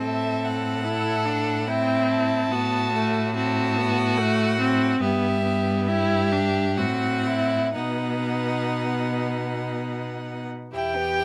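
A light reverb surrounds this 11.2-second fragment of a slow, romantic string quartet movement, tuned to A4 = 441 Hz. The mood is solemn and elegiac, moving in 3/4 at 58-73 BPM with a rubato feel. A single bowed violin carries the melody between E5 and A5, its tone warm and focused with a smooth top. A second violin plays a rich, even second line that sits up front, while the viola fills in the accompaniment. The cello anchors the bass in its low register, also up front and smooth, and all four players use vibrato. The harmony moves from F#dim over A through B and E minor chords, settling on E minor at 10.7 seconds.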